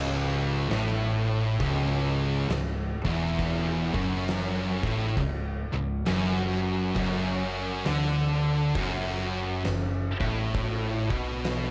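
Stoner and doom metal with an ominous, hypnotic pull, moving at a slow, swung crawl in this short cut from a longer piece. Three distorted guitars grind through low riffs from the start: a bright, double-tracked high-gain guitar sits alongside two thick fuzz guitars, one warm and one darker tucked in the background. Beneath them a round, hollow-body short-scale bass, fingered and overdriven, adds weight an octave down. An oversized, low-tuned acoustic kit arrives at 0.7 seconds, its punchy kick, fat snare and crash cymbal carrying a gritty, saturated character in a bright stone room. The harmony holds on C#m before shifting to Bm7/F# at 7.0 seconds, all under a light reverb.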